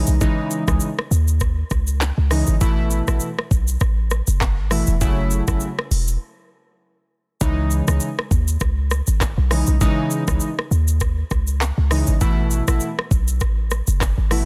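Mellow and hypnotic, this dry, densely mastered afrobeats fragment pairs round, detuned analog keys with chorus and a bright ring-modulated edge against a deep, boomy sine 808-style bass, while an up-front electronic afro-pop kit of knocking kick, smooth hi-hat, handclaps, rim click, shaker and softly clipped snare carries a gentle swing through a brief break at 6.2 seconds.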